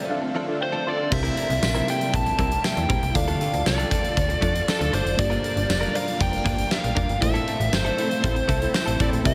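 A straight 4/4 pulse from a huge arena drum kit with a fat snare and punchy kick drives this urgent, dramatic 1980s-style pop excerpt, entering at 1.1 seconds together with a snappy, metallic slap-like FM bass, while a biting, overdriven lead guitar carries the melody up front over a clean, direct-recorded electric guitar riff, a soft FM electric piano, a swirling phased string machine and very quiet brassy synth stabs, all set in a dreamy mix soaked in reverb as the chords move from Dm7 through C7, Dm and Gm7 to Am.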